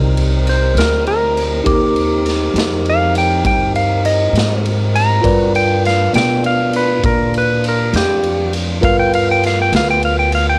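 Slow blues in C minor, moving at 67 BPM in a straight 12/8, with a brooding, smoky mood in this short passage cut from a longer piece. A clean, twangy lap steel guitar carries the melody up front throughout, its bright slide lines forming a solo that spans G4 to Bb5. Beneath it, a bell-like tine electric piano adds clean accompaniment, while a fat tonewheel organ holds sustained chords in the background through a slow rotary speaker and plate reverb. An upright bass, woody and pizzicato on steel strings, sits up front in the low register, and a raw garage drum kit enters at 0.2 seconds with punchy kick, medium-tuned snare and ride cymbal, sounding saturated and gritty with a rolled-off top in a pumping stone room. The harmony shifts from Cm7 to G7#9 at 5.2 seconds, and the home cassette recording lends the lap steel, piano, organ and drums a taped, lo-fi character under light reverb.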